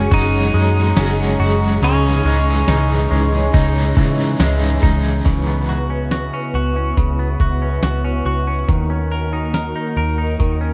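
A straight 4/4 pulse at 70 BPM carries this hazy, ethereal dream pop excerpt in C# dorian, with a lo-fi sampler-style drum kit sitting up front: a muffled, pitched-down set with a thumpy kick, a medium-tuned snare, hi-hat, ride, and tambourine, all compressed and overdriven. Beneath it, a vintage muted picked electric bass gives a round, dark, foam-muted low end, while a semi-hollow electric guitar plays clean, scooped arpeggios through lush chorus and delay. A string machine with cellos holds sustained chords with a soft attack and long release, its sawtooth tone full-bodied and thickened by ensemble chorus and a sub octave. Over this, a twangy clean electric guitar carries a brief melody with delay until 4.4 s, and a bright, cranked stack guitar adds overdriven accompaniment with tremolo and chorus until 5.8 s. The harmony moves from F#sus2 and C#madd9 to C#m11 at 5.3 s and D#m7, all wrapped in light reverb and a dark, warm production.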